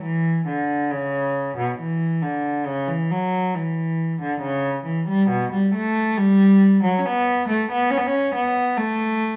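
A single bowed cello opens the recording and carries it alone for its full 9.4 seconds, a short stretch cut from a longer baroque-style suite movement for unaccompanied cello. The mood is flowing and radiant, moving in a slow 3/4 at 69 BPM with a rubato feel that lets the phrasing breathe. The period-style playing brings out a nasal, reedy gut-string tone, and the instrument sits up front in the sound, ranging from B2 to C#4. A moderate stone-room reverb with about 1.0 s of decay gives the cello a resonant halo. The tuning rests at A4 = 439 Hz.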